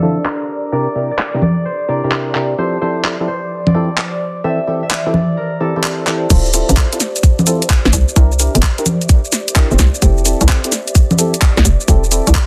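A skippy two-step garage groove at 129 BPM swings its sixteenths at 67% in 4/4, moody and set in D minor, heard here as a short cut from a longer piece. A thumb-plucked concert harp rings out a melody through tape echo until 7.8 seconds, over hollow, nasal organ stabs bathed in lush chorus and echo, a soft, breathy pad pumping in the background, and a very quiet, warbling tape-like pad that adds a nostalgic, lo-fi haze. The garage kit enters at 0.3 seconds with congas, shaker, handclaps, hi-hat, crash and a cracking, overdriven snare, while a filter sweep runs across the opening as the chords move from C9 through Fmaj9 to Am7/E. At 6.3 seconds the track drops on Dm9, bringing in a tight, overdriven electronic kick and a hollow, knocking FM bass that bounces punchily up front. The mix sits in light digital ambience under a dense, heavily limited master with a low-pass filter softening the top.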